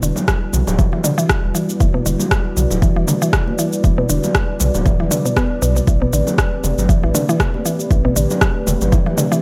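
This afro house excerpt in E minor opens with a dark, detuned sawtooth pad holding sustained chords with chorus, a woody, mallet-like FM pluck playing arpeggios through chorus and digital delay, a round sine sub bass, a tape-warm deep house kit of cabasa, rim click and toms, and very quiet, high-tuned congas ringing from a distant large room. A deep, up-front electronic kick joins at 0.3 seconds. At 118 BPM with swung 16ths, the pad, pluck and bass pump with sidechain as the harmony moves from Em9 to Am11 at 5.9 seconds, in a dry, spiritual mix with little reverb.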